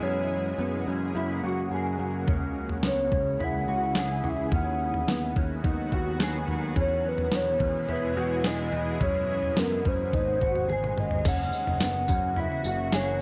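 Heard through a worn, warbling cassette haze with light digital ambience, this hazy, haunting dream pop fragment at 107 BPM sets a hollow, woody clarinet-like synth lead with vibrato and tape echo over a shimmering, detuned ambient pad, dark fingered electric guitar arpeggios in ensemble chorus and a warm picked electric bass, while a thumpy, sampler-style 8-bit drum machine, re-recorded in a large room, enters up front at 2.3 s and plays a fill at 10.7 s as the chords move from F#add9 through C#m, E and G# to F#7.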